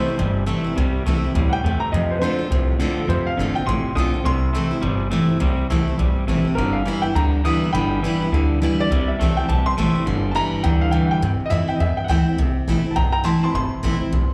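Heard through a live club PA with light reverb, this retro, rollicking swung rock cut at 207 BPM in C major pairs a clear, intimate upright piano melody, with audible action noise and slapback echo, with a bright, full-bodied picked steel-string acoustic guitar, a dark, twangy electric guitar riff that drops out at 11.2 seconds as the piano takes a short solo, and a thumpy, woody pizzicato upright bass up front.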